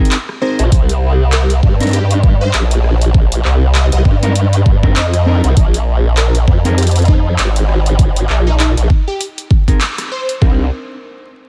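A swung 99 BPM glitch hop groove in 4/4 and C minor drives this playful, funky cut from a longer piece, with an up-front, overdriven knocking kick and a layered electronic kit of bright hats, handclaps and rim clicks under a detuned, formant-filtered wobble bass with chorus, while a dark, clean electric guitar plays stabs through 12-bit sampler grit, sidechain pumping and delay, and a catchy sawtooth unison lead with vibrato sits in the background, all in a dense, heavily limited master with vinyl crackle and a band accent at 9.8 seconds before the chords return to Cm9 at 10.4 seconds.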